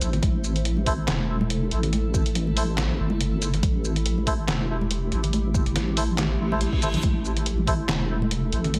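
A heavily compressed, radio-like sound with light digital ambience frames this heavy, cavernous deep dubstep excerpt in a half-time swing, where an up-front, wobbling, dark bass with chorus and tube saturation and a layered electronic kick anchor a muffled, pitched-down sampler-style kit of snare, hi-hat, shaker and handclaps, while a blurred, evolving granular cloud pad sustains chords, soft-handed congas drift in dub echo in the background, a reedy, nasal melodica jabs short stabs through echo, and a reverse cymbal rises from 6.4 to 7.0 seconds.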